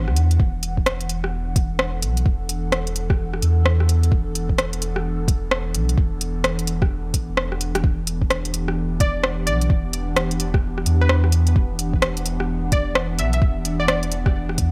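Future garage with a nocturnal, melancholic mood, cut from a longer piece and driven by a swung sixteenth-note feel. An airy, breathy pad holds sustained chords throughout, softened with chorus and pumping against the sidechain, moving from Bm7/E to Em7 at 7.8 seconds. Underneath, a deep, round sub bass sits up front, also pumping with the sidechain. An overdriven electronic kit of smooth hi-hats and rim clicks enters at 0.1 seconds, joined by a soft, overdriven kick at 0.4 seconds, both up front with studio reverb. From 9.0 to 14.0 seconds a glassy, crystalline wavetable pluck carries the melody, bright and decaying, dressed in chorus and delay, while light reverb gives the whole mix a gentle sense of space.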